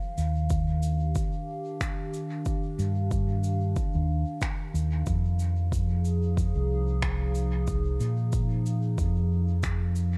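Ambient dub with a spacious, meditative mood, moving at an unhurried pace with a gentle swing on the sixteenths. A warbly, tape-like pad opens the piece, holding sustained chords through a chorus and its own reverb, its detuned, lo-fi tone carrying a nostalgic haze as the harmony shifts from Ebmaj9 to Fm7 at 5.1 seconds. A fingered electric bass enters at 0.2 seconds, round and punchy, sitting up front as the most prominent part. Shaker and finger snaps arrive at the same moment, distant and roomy with a rolled-off top, trailing into dub echo, while an overdriven electronic kick with a deep, layered body joins at 0.5 seconds. The dark, warm production and light studio reverb give this brief cut from a longer piece a hushed, enveloping atmosphere.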